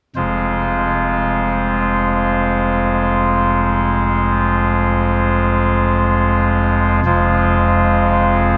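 In free, unmetered time, this solemn, dark classical fragment, cut from a longer chorale-style piece, features a solo chamber organ voiced on a soft reed oboe stop, its light chiff sitting up front. The organ sounds from 0.2 to 8.6 s over a single sustained harmony, spanning from deep bass up into the treble. A long cathedral reverb, captured in a church or concert hall, lets each note hang and bloom into the stone-like space.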